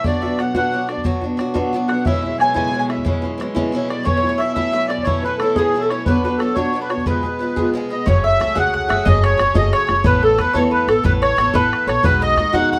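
This wild, spirited Celtic folk slide in 12/8 moves at 120 dotted-quarter beats per minute with a straight feel, cut from a longer piece. A reedy, sweet accordion with light tremolo tuning carries the melody up front, its vintage, band-limited tone joined by a mellow, double-strung mandolin playing a second line in the same range. A boxy, picked archtop guitar sits forward in the accompaniment, while a boomy, close and dry bodhran drives the percussion throughout. A smooth, bowed studio string section holds a rich vibrato drone beneath the opening chords of Bm, C#m and A, then falls away at 8.1 s, where a thumpy pizzicato upright bass on steel strings enters and the music settles into F# dorian over chords such as F#madd9 and Asus2. A moderate studio ambience gives the ensemble a modest sense of room through to 12.8 s.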